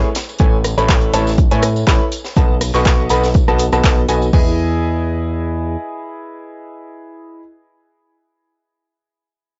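Feel-good, joyful piano house at 122 BPM in E major, this short cut opens on a drop where a brilliant, long-sustaining grand piano riff and a plucky, tube-saturated sawtooth bass pump up front over a punchy tape-warm kick, an analog drum machine with claps, shaker and crash, a high-passed funk kit with a high-tuned snare and a background tambourine, moving through Amaj9 and B7 before the drums drop out at 4.4 s and the piano carries on alone over Emaj7 after the bass stops at 5.8 s, all heard through a gritty, dull cassette sound in a small room.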